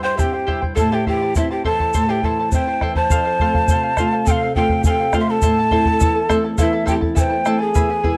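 A dry, close 1970s-style studio sound frames this wistful, melancholic Andean folk excerpt in A minor at 103 BPM in 2/4, where a hollow, airy quena with vibrato and chiff carries the melody over breathy large cane pan pipes on a second line, a shimmering fingerpicked charango with double strings and a boxy nylon-string guitar in accompaniment, and a round, up-front bombo and grainy egg shaker entering at 0.2 s, as the harmony moves from C to Am and then to F at 3.1 s before returning to Am.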